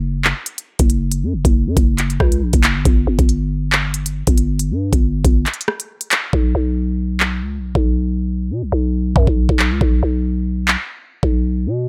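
A growling, buzzy 808-style bass opens this dark, tense drill excerpt at 138 BPM in a half-time feel, joined up front by an electronic kit of knocking kick, crisp hi-hats, handclaps and rim clicks in a digital ambience, before a break at 5.5 seconds and a second section from 6.3 seconds where the hi-hats drop out.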